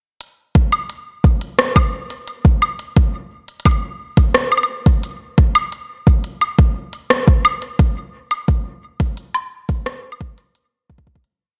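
Intricate and wistful, this short IDM piece moves at 87 BPM in a straight 4/4 groove built entirely from drums. An organic electronic drum kit enters at 0.2 seconds with smooth closed hi-hats, rim clicks and a high woodblock in a glitched, ever-changing beat, joined at 0.6 seconds by a deep electronic kick drum playing a broken pattern. Both parts are overdriven, re-recorded in a large room and sit up front in a dry mix, and the whole piece fades out from 7.6 seconds.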